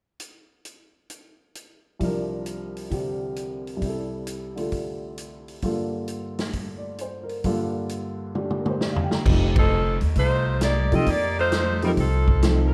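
Brassy and swinging, this big-band jazz excerpt moves at 132 BPM in 4/4 with a swung eighth-note feel. A natural, big-room drum kit with a boomy kick opens it, and a woody, polished upright piano joins at 2.0 s over C7sus4, Fmaj7/C and Gm7 chords. A drum fill then launches the final stretch in F mixolydian, where a pizzicato upright bass enters at 9.3 s, a band accent lands at 9.5 s, and a soft-attack saxophone section with vibrato takes the melody from 9.6 s, all inside a dark production with light reverb.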